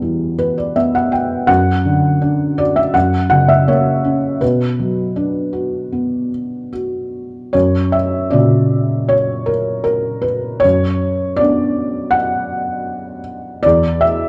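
Melancholic and wistful, this lyrical classical solo piano passage, cut from a longer piece, drifts in rubato 4/4 at 73-84 BPM on a felt-muted upright piano, its muted, intimate tone carrying thick felt, short sustain and audible action noise up front in a moderate recital hall reverb. It opens with a felt piano fill over Em, then moves through Dadd9/F# before settling on Bm, and turns toward B harmonic minor at 7.5 s with F# and Bmadd9/F# until the harmony falls away at 13.6 s.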